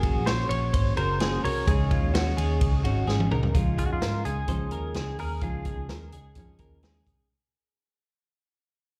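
A nostalgic, breezy slice of jangly indie pop at 128 BPM in Db major opens with the full band at once: a bright, picked clean electric guitar melody with analog chorus and slapback echo, a direct-recorded electric guitar playing twangy arpeggios through chorus, slapback and tape echo, and a woody, full-bodied fingerpicked steel-string acoustic with old strings. Underneath, a round, dark, foam-muted vintage bass and an up-front vintage kit with a punchy kick and rolled-off top drive the Gbadd9 to Dbsus2 changes, all heard as a live gig through the venue's PA with club reverb. A drum fill at 3.1 seconds leads into a Dbadd9 passage that fades out from 3.5 seconds.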